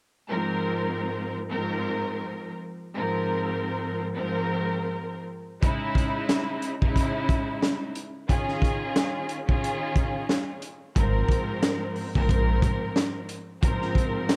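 A lush, bowed string section opens this nostalgic, soulful boom-bap hip-hop excerpt over an Ab69 chord. Its smooth vibrato and even ensemble tone sit up front, with a distant, studio character and high- and low-pass filtering. At 5.6 seconds a crunchy breakbeat kit enters with a punchy kick, a high-tuned snare and hi-hat, its saturated, gritty sound dark and rolled off at the top, with a swung sixteenth-note feel. The harmony moves through Dbmadd9 and Eb9sus4 before settling back on Ab69 as a new section begins at 11.0 seconds. There a round, deep analog bass joins briefly, its detuned blend of sawtooth, sine and triangle tones giving sustained low notes a fast attack. Light reverb and a small room ambience frame the mix, keeping the track intimate and nostalgic.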